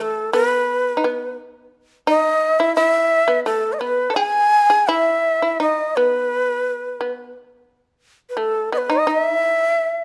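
Loose and rubato over an uneven 2/4 pulse at about 86 BPM, this austere, calm excerpt of Japanese traditional chamber music in E ryukyu sets an up-front shakuhachi, breathy and reedy with vibrato, tongued chiff and lifted highs, carrying the melody against a bright, buzzing, plectrum-plucked shamisen playing a percussive second line, heard through close, detailed microphones in light reverb.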